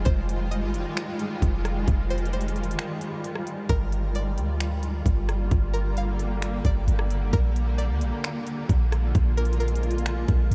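A blurred, evolving granular pad opens this melancholic, ethereal cloud-rap fragment alongside a deep, boomy, clean 808 bass that sits up front, while sidechain pumping and ensemble chorus give the detuned, bright pad its cloudy sway. A trap kit of hard-clipped kick, crisp hats, finger snaps and rim clicks enters in a half-time feel, and a twangy, nasal, string-like resonator pluck carries the melody in the background through chorus and tape echo. A brief break falls between 2.8 and 3.7 seconds as the harmony moves from Fm9 to Gm7 to Bb7, all inside a dreamy mix soaked in huge ambient reverb.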